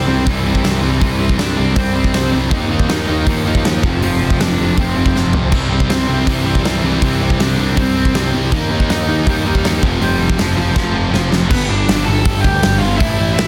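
Punk rock at 160 BPM in a straight 4/4, this rowdy, upbeat cut from a longer piece charges ahead over chords moving from C through Eb and F before landing on G at 11.5 seconds. A dark, high-gain lead guitar with distortion and digital delay carries the melody, while two overdriven rhythm guitars, one sludgy and dark, the other a bright cranked stack, pick out riffs in the background, the stack guitar dropping out at 11.5 seconds. A growly fuzz bass, picked and overdriven with a direct-and-amped edge, drives the low end. The big acoustic drum kit sits up front from 0.3 seconds, with a fat snare, tight kick, bright cymbals, hi-hat and toms ringing in a natural big-room sound, and fills mark the turns into new passages. At 5.5 seconds a very quiet, double-tracked scooped guitar joins the riffing. The mix stays dry and dense, with a heavily limited modern master.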